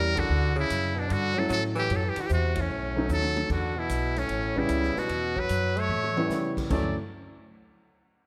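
A swung 4/4 feel drives this sophisticated, playful fragment of small-group swing and bop, where a buzzy, brilliant trumpet with metal mute carries the melody up front with vibrato and scooped notes over a clear tenor saxophone second line, a natural-sounding baby grand piano accompaniment, a woody pizzicato upright bass, and a distant, roomy drum kit with dark cymbals and a boomy kick that adds fills at 3.1 and 5.9 seconds after a band accent at 0.1 seconds, set in light reverb.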